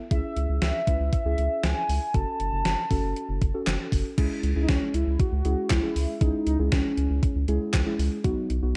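Synth-pop in C# minor at 118 BPM, this driving, nocturnal fragment pairs a gated, overdriven digital drum machine with thumpy kick and handclaps and a round, wave-folded analog bass up front beneath muted, felt-like keys and a velvety, warbling lead treated with chorus and tape echo, all set in a dark production with digital ambience.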